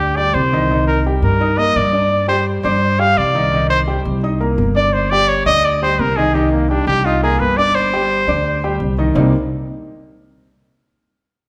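A breathy trumpet leads this short, fiery jazz clip in C minor, playing a solo melody up front with light vibrato and a smooth top from the start until 8.8 seconds. The tune moves at a driving 170 BPM in a straight 4/4, over a harmony that keeps alternating between Gsus4 and Cm9. A concert grand piano supplies accompaniment with a deep bass register and a natural, intimate character, and its action noise can be heard. The pizzicato upright bass sits up front with a woody, dark, thumpy tone from its steel strings, and both piano and bass play on to 9.3 seconds. The whole performance rings in the wet reverb of a church or concert hall.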